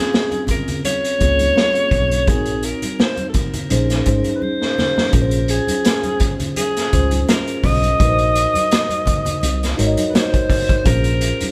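A band playing live in one room with moderate studio reverb gives this cinematic, silky 1970s-style soul excerpt in Bb minor at 84 BPM its feel, as a forceful, vibrato-laden alto saxophone with tape echo carries the melody up front over mellow tine electric piano, a vintage drum kit with a punchy kick, a rolled-off top and a fill at 4.4 seconds, bright congas in the background, and a dark, round hollow-body fingered bass that enters at 1.2 seconds.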